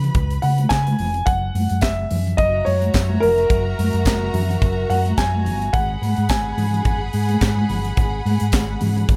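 A worn, long-sustaining baby grand piano carries the melody up front from 0.4 seconds in this driving, danceable disco excerpt at 107 BPM, its swung sixteenth-note feel riding over chords that move from C#7 to F#7 and then G#m7. A dark, round fingered electric bass and a polished acoustic drum kit with a punchy kick, high-tuned snare, hi-hat and handclaps sit up front alongside it. A lush, bowed violin section with vibrato plays a second line, while bright, high-tuned congas sound in the distant background and a very quiet, jingly tambourine joins at 0.7 seconds, all in a dry, close mix.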